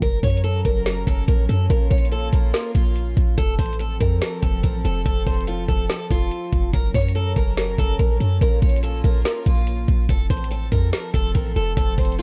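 From the first second, a picked, boxy parlour-style steel-string acoustic guitar carries a melancholic melody through tape echo, with audible finger squeak, over close, reedy bowed strings that hold sustained chords with light vibrato and a gut-string tone. This dark, half-time trap excerpt puts an electronic kit with vintage 12-bit sampler grit up front, with a knocking kick, woody snare and metallic hats, while a deep, boomy sine 808 bass with a fast attack sits further back. The production is dry and rolled-off in the highs, and the harmony cycles through Gb, Bbm and F.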